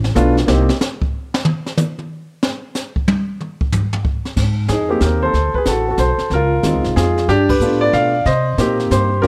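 Swinging in 3/4 at 185 BPM, this relaxed jazz piano trio opens with a brushed drum solo from 0.5 to 4.4 seconds, with dark cymbals, a high-tuned snare and a boomy kick up front, before the woody, growly pizzicato upright bass returns and an intimate grand piano with audible action noise and long sustain carries the melody through Abmaj7, D7, Dbmaj7 and G7 back to Cm7, with a band accent at 7.4 seconds in light reverb.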